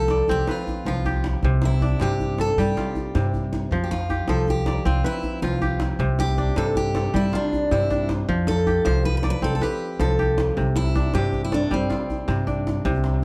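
A steady, straight 12/8 pulse at 105 beats per minute, counted in dotted quarters, carries this joyful West African traditional piece for strings and percussion in C major, a short cut from a longer performance. Up front, a bright, crisp kora spins fingerpicked arpeggios that ring across a broad span, while a dreadnought steel-string acoustic guitar, also close and present, carries the picked melody with a touch of finger squeak. Beneath them, a woody pizzicato upright bass with steel strings anchors the low end with a warm tone, and a medium-tuned djembe with metal rattles sounds distant, as if set in a large room. The harmony moves between F and C chords throughout. The guitar drops out at 12.4 seconds, leaving the kora, bass and djembe to close out the passage in a dry, close 1970s-style studio sound.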